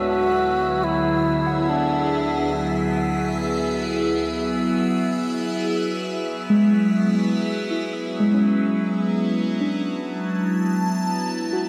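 In free time, this luminous ambient fragment opens with a bright, airy alto flute melody with vibrato and delay that sounds only for the first 2.5 seconds, over an evolving, morphing wavetable pad held up front with a phaser. Muted, intimate felt-like synth keys add soft, decaying arpeggios through chorus and delay, while a dark, wind-like tuned noise texture sits airy and low in the mix. The harmony moves from D to E to Bm7, all bathed in a lush hall reverb.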